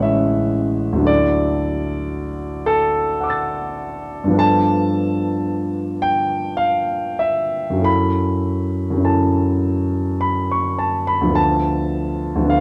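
Luminous and dreamy, this brief impressionist solo piano fragment, cut from a longer piece, drifts in a slow, rubato 3/4 as a warm, open grand piano with long sustain sits up front in light reverb, its close, detailed sound ringing through rich chords from Amaj7 through Dadd9, G9 and F#m7 before settling on a hazy Dm6 at 11.4 seconds.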